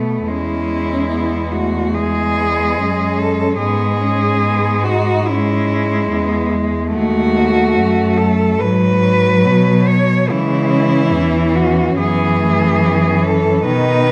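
A lyrical, unhurried classical piece in E major at 72 BPM with a rubato feel opens with bowed cellos on the low bass line, the inner accompaniment and an expressive second line in the background with portamento, before the melody cello enters at 0.3 s, focused and up front with vibrato and a smooth top, while the accompaniment sounds even and distant, the bass is warm and focused, and the wet recital-hall reverb carries the chords from E through D#dim and G#m7 to a closing F#m11 in this passage cut from a longer work.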